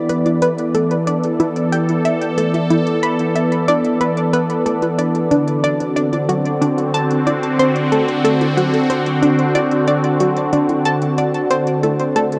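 A sweeping, resonant pad opens this cosmic, expansive stretch of sequencer-driven space music, holding sustained chords that move from E7(no3) to D7 at 5.3 seconds. The pad is airy and evolving, built from detuned sawtooth layers with a breath of noise, a soft attack and long release, and it sits bright and up front with a chorus sheen. Almost at once an analog pluck joins with a repeating riff, its round sawtooth and square-wave tone thickened by a sub octave, its fast attack and short decay roughened by vintage 12-bit sampler grit and carried off by tape echo and chorus. Far back in the mix, electronic hi-hats with a metallic edge and analog-sounding congas keep a straight pulse, also trailing tape echo. A huge, wet reverb with a long tail surrounds the production, giving it a dark, enveloping depth in this passage lifted from a longer piece.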